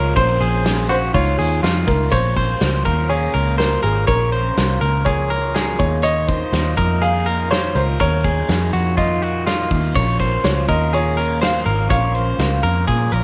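Jangly indie pop at 123 BPM in a straight 4/4, this breezy, bright excerpt is cut from a longer piece and moves from Bbmadd9 and Dbadd9 into a Bbm to Ebsus2 progression. A woody, intimate upright piano carries the melody, its action noise audible and its tuning slightly off, treated with a slapback echo. Up front, a twangy, direct-recorded clean electric guitar picks compressed arpeggios, also with slapback echo, while a dark, foam-muted vintage bass sits round and close beneath it. Further back, a crunchy overdriven guitar adds picked accompaniment through a phaser, and a reedy, worn electric piano, very quiet and slightly out of tune through its built-in speakers, appears at the start and returns at 9.9 seconds. A loose, roomy drum kit enters at 0.2 seconds with hi-hat, a punchy kick and a medium-tuned snare, its distant sound rolled off at the top, and the whole mix sits in a moderate echo chamber reverb.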